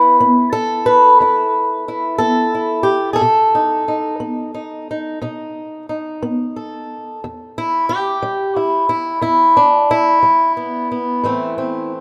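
This acoustic country blues piece is a brooding, smoky cut from a longer work, moving at 60 BPM in a slow 12/8 in E harmonic minor. A single fingerpicked, swing-style steel-string acoustic guitar carries it for the full 12 seconds, sitting up front and ranging from E2 to B4. Its tone is warm and boxy with the sound of fresh strings, and audible finger squeak adds a close, human touch. The harmony moves from E5 to B7, then settles on Em at 7.2 seconds, where the guitar takes a solo turn, before shifting to Am near the end. A moderate plate reverb with a long 3.6-second tail gives the rough home-demo sound a hazy halo.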